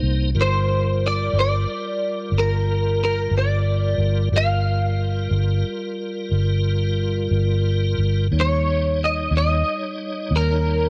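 Slow blues in G minor at 60 BPM in 12/8, this smoky, mournful fragment of a longer piece sets a round, foam-muted fingered electric bass up front under sustained tonewheel organ chords with a piping, scooped tone, key click, chorus vibrato and slow rotary speaker, while a clean, compressed electric guitar enters at 0.4 seconds with a picked melody coated in ensemble chorus, the harmony moving from Gm7 to Eb7 at 8.3 seconds inside a digital ambience.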